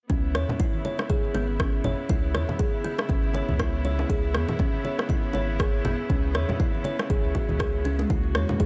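A driving, spiritual afro house excerpt opens with a deep, tape-warmed electronic kick up front in a small room, a round sine sub bass, woody, ringing kalimba arpeggios with dub echo and biting, smooth-topped sustained string chords with light vibrato, all three of those with sidechain pumping, while bright, soft-handed congas sit in the background, low-tuned bongos stay very quiet and a layered electronic rim click joins at 0.3 seconds, the harmony resting on C#m7 before moving to F# at 8.1 seconds.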